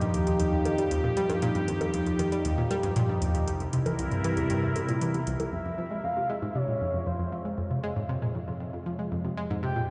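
Expansive and hypnotic, this short excerpt of sequencer-driven ambient space music at 117 BPM sets a round, wave-folded analog pluck riff and a swirling phased pad, which fades in from 5.5 s, over electronic hi-hat and bongos with metallic hats, until the percussion stops at 5.5 s and a breathy, flute-like synth lead with vibrato takes the melody as the chords move from Eb through C7 to F minor, all bathed in a huge ambient reverb with a softened top end.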